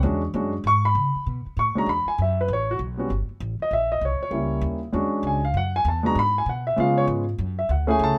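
An intimate grand piano sits up front, its natural tone carrying the faint clicks of its action as it comps through this relaxed, swinging jazz excerpt in E mixolydian. The tempo is a brisk 196 BPM in 4/4, with the eighth notes swung, and the band is tuned to A4 = 441 Hz. An acoustic upright bass with gut strings plays pizzicato beneath it, its woody, thumpy sound also close and present. Both instruments play together from 0.0 to 8.2 seconds, moving through E13, Bm7, Esus2, A13 and A#dim7 before returning to E13 and turning through G#m7, C#7 and F#m7. A light reverb gives the duo a gentle sense of room, keeping the sound warm.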